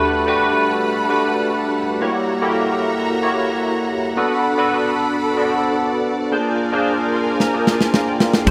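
Bright, glossy 1980s-style digital production with a moderate plate reverb frames this breezy jazz-funk pop at 112 BPM, where a barky, chorused tine electric piano up front accompanies a lush, bowed string section sustaining chords from Gmaj9 through F#7b9, Bm7 and Bb9 before an electric piano fill at 6.9 seconds and a tight, up-front drum fill at 7.4 seconds lead to a round fretless bass note and a barely audible twangy guitar at 8.5 seconds.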